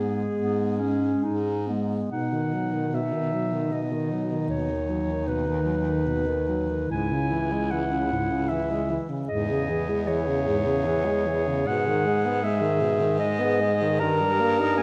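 Elegiac and yearning, this classical piece for a single-reed quartet moves at 76 BPM in 3/4 with an elastic, rubato pulse, drifting from B major into G# minor at 11.7 s as part of a longer work. A warm, soft-attacked clarinet carries the melody up front and close-miked, while a clear second clarinet sings a line beneath it. A mellow tenor saxophone supplies the accompaniment and a prominent baritone saxophone with vibrato anchors the bass, all bathed in the lingering reverb of a recital hall.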